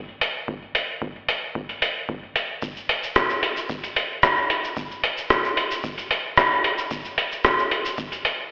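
Hypnotic and nocturnal, this short techno fragment, cut from a longer piece, moves in a straight 4/4 feel built entirely from percussion. A lo-fi sampler-style drum kit sits up front from 0.2 seconds, its hi-hat, rim click and shaker compressed, pitched down, muffled and tape-warm, and re-recorded in a large room. Beneath it, from 0.5 seconds, an analog electronic kick drum supplies a deep, low pulse that sits well back in the balance. The whole recording carries a moderate, lush hall reverb with a 2.5-second tail, and it sounds as though played on a big sound system in a bare stone room, with a telephone-like quality to the sound. The result is murky and cavernous, a shadowy groove that hangs in a reverberant space until the kick drops out at 8.1 seconds.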